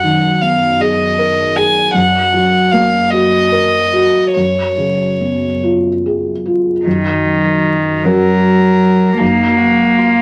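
A single violin carries the melody from the opening, its airy bow and soft attack giving a pure, floating line that sits close and up front. Beneath it, a felt-muted upright piano supplies mellow, dark accompaniment, its thick felt damping the tone while the action noise of the instrument stays audible in this intimate setting. At 6.9 s a cello joins with a smooth second line, played sul tasto by one player and sitting a touch louder than the other parts. The piece is neoclassical in style, unfolding in a slow, rubato 6/8 over chords held above a constant F# bass, and its mood feels hopeful and private. A studio reverb lends a wet sheen, vinyl crackle adds a dusty surface, and the recording is a short fragment cut from a longer work.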